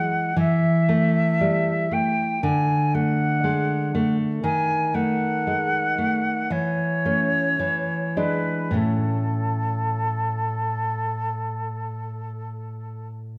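An airy silver concert flute sings a lyrical, serene melody with vibrato and tongued phrasing, up front in this romantic duo in A major, tuned to A4 = 443 Hz and taken from a longer piece. Beneath it, a full-bodied nylon-string guitar fingerpicks a deep classical accompaniment through a progression from A5/E to D, D#dim, A/E and E7 before settling on A. The rubato 4/4 pulse drifts between 48 and 61 BPM in a moderate recital hall reverb, with the flute stopping at 13.1 seconds just before the guitar closes at 13.4 seconds.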